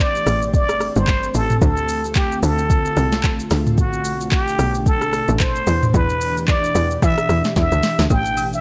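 A digital ambience frames this short, soulful amapiano excerpt in A minor, moving at 111 BPM with a swung sixteenth-note feel. A plunger-muted trumpet carries the jazz-style melody up front from the start, its raspy, growling tone colored by wah-wah, light vibrato, scooped notes and a tape echo. Beneath it, a tight, punchy log drum bass with a fast attack and decaying tail holds down the low end, while an ethereal, detuned pad sustains chords through ensemble chorus and its own reverb, warbling behind the other parts. The overdriven electronic drum kit enters at 0.2 seconds with a soft kick, sharp snare, crisp hats, handclaps, rim clicks, shaker and toms, and it plays a fill from 7.6 to 8.1 seconds. Agogo bells appear in the background only briefly at 8.1 seconds as the chords move through Am7, Dm7, Bm7 and Em7 before returning to Am7.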